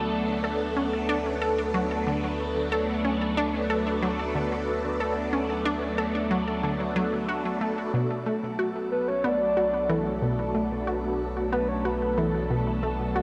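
Bathed in a long plate reverb and shimmering tails, this hypnotic, cosmic stretch of sequencer-driven space music drifts at 92 BPM in 4/4, moving from D6 to Bm7. A swirling, vintage phased string machine holds up-front sustained chords over a deep, round analog bass that fades in, while a pulsing gated texture murmurs in the background and a juicy, squelchy blip pluck riff enters at 0.4 seconds with chorus and delay. At 8.9 seconds a mellow, octave-layered synth lead with vibrato takes the melody before the passage cuts off.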